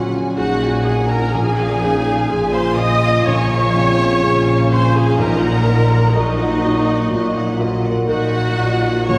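A bittersweet, longing cinematic passage, cut from a longer piece, opens with a soft-attacked violin section singing the melody in the background over a mellow solo clarinet line, a felt-muted upright piano with audible action noise, dark sustained French horn chords, very quiet ringing harp arpeggios, and lush bowed cello and double bass sections on the bass; at 0.4 seconds a very quiet, airy, hollow flute section, a second violin line and a close, up-front viola section join, and soft-mallet timpani enter very quietly at 5.2 seconds, the rubato phrasing carried in a reverberant concert hall.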